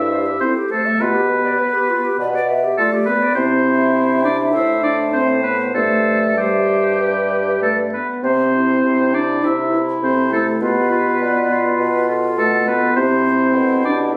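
This quick, classical-period wind quintet movement is spirited and lively, played with a rubato feel in a short passage cut from a longer piece. An airy, hollow flute carries the melody from the background, while a warm oboe with light vibrato sits up front on the second line. A bright clarinet and a mellow French horn fill in the accompaniment, and the bassoon anchors the bass with a soft attack, all heard through the reverb of a recital hall, captured on a phone in the room and compressed.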